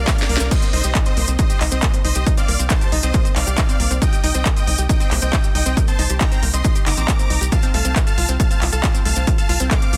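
A dense, heavily limited modern master with little reverb gives this uplifting trance excerpt a tight, forward sound, soaring yet bittersweet at 137 BPM in straight 4/4, in C dorian tuned to A4 = 438 Hz. It opens on a short drum fill and band accent over Gm, with a bright, distant symphonic string section bowing faint sustained chords with light vibrato before the drop lands at 0.5 seconds on Cm7, later moving to F/C at 7.5 seconds. A huge, euphoric supersaw lead carries the melody, its detuned unison sawtooth compressed and sustained, pumping with the sidechain and trailed by tape echo. Beneath it, a round analog pluck spins arpeggios through chorus and tape echo, while a tight, driving sequencer bass blends sawtooth and square wave into a mellow, decaying filter pluck sitting up front with its own sidechain pumping. The punchy, tape-warm electronic kick anchors the rhythm section, joined by a layered techno kit with a cracking snare, smooth hi-hats, handclaps and crash cymbal, re-recorded in a small room. 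Grainy acoustic maracas sit close and dry in the background.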